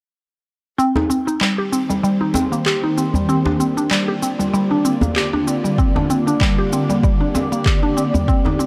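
A lightly swung 16th-note groove at 96 BPM in 4/4 sets the pace of this organic downtempo piece in C minor, carried by electronic cabasa and handclaps and an acoustic djembe heard in a live room. A woody, round mallet-like synth pluck plays up-front arpeggios from 0.8 seconds, its fast attack and mellow decay colored by analog chorus and tape echo. From 1.9 seconds a cloudy, granular pad holds sustained chords with a slow attack and long release, bright and blurred through its built-in reverb, pumping from sidechain compression while a filter sweeps across it. The harmony moves from Cm7 to Bb to Gm, and at 5.8 seconds a deep electronic kick drum arrives up front. Dark production and light reverb give the recording a warm, mystical mood.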